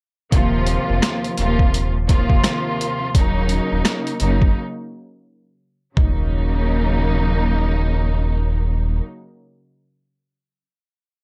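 The sound is dry and close, with little reverb, and this cut from a longer piece has a gritty, tough boom-bap hip-hop mood at 85 BPM in 4/4, swung on the sixteenths in Eb dorian. A sampler-style drum kit sits up front, compressed and pitched down, with a thumpy kick, a high-tuned snare, hi-hat, rim click and toms that carry the grain of a small room. Underneath, a deep, full sine sub bass with an added octave holds low sustained notes with a fast attack. A lush symphonic string section, also up front, plays smooth, even bowed chords with vibrato, filtered at both ends, moving from Bbsus2 over Eb to Ebm7 at 3.1 seconds. A break arrives at 4.6 seconds, and the drums drop out at 6.2 seconds, leaving the strings and sub bass to carry the second section to its close.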